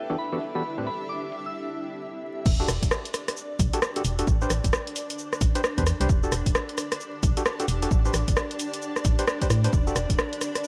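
Lightly reverberant and crackling like a home cassette, this moody, skippy two-step garage excerpt in E minor at 132 BPM opens with a silky string machine swept by a filter and a cloudy granular pad pumping alongside hollow, mellow organ stabs, a pure, warbling bell melody that ends at 1.5 seconds, and up-front drum-machine cabasa, hi-hat, rim click and crash with muffled tops, then after a brief break the drop at 2.5 seconds brings in a dark, percussive FM bass and a punchy, tape-warmed kick under swung sixteenths and alternating Em11 and Am11 chords.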